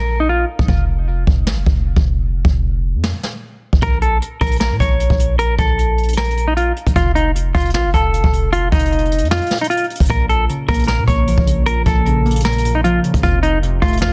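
A clean, up-front semi-hollow electric guitar carries the melody through a low-pass filter and tape echo, returning at 3.8 s in this menacing, brooding half-time trap cut at 153 BPM in Bb harmonic minor, over a punchy, heavy 808-style sine bass with a noise layer, a natural jazz brush kit entering at 0.6 s with a boomy kick and soft-clipped snare, and warbling, detuned, chorused lo-fi synth keys arriving at 10.1 s, all set in a small room with a dense, heavily limited modern master.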